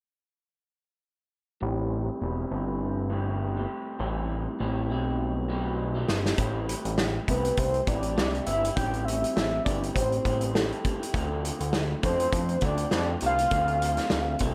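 A soft, octave-layered synth lead carries the melody from 7.3 seconds, its round, dark tone thickened by a sub octave, vibrato and analog chorus. This lonely, mellow slice of indie and bedroom pop is cut from a longer piece and sits in A minor at 101 BPM in 4/4, with a light swing on the sixteenths. From 1.6 seconds, an electric guitar through a small old amp plays the accompaniment, bright, twangy and slightly broken up, colored by lush chorus, warbly pitch drift and a low-pass filter, with a filter sweep across the opening passage. A fat, saturated analog bass, nasal and detuned with a plucky attack, sits up front beneath it. A loose indie drum kit arrives at 6.1 seconds, sounding distant and roomy, with hi-hat, a tight kick and a medium-tuned snare. The harmony moves from Am7 to Dm7 under a light reverb.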